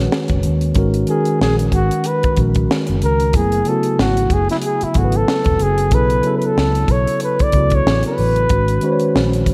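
Swung sixteenths at 93 BPM drive this late-night, sultry neo-soul R&B excerpt in G# minor, anchored by a dry, up-front funk kit with a tight kick and high-tuned snare and a dark, round, punchy foam-muted electric bass. A mellow tine electric piano with slapback echo lays down G#m11, F#m11 and B9sus4 chords, and at 1.1 seconds a breathy flugelhorn enters for a jazz-style solo of scooped notes and light vibrato, also touched with slapback. The whole sits in a lush hall reverb with a big arena feel and a layer of vinyl crackle.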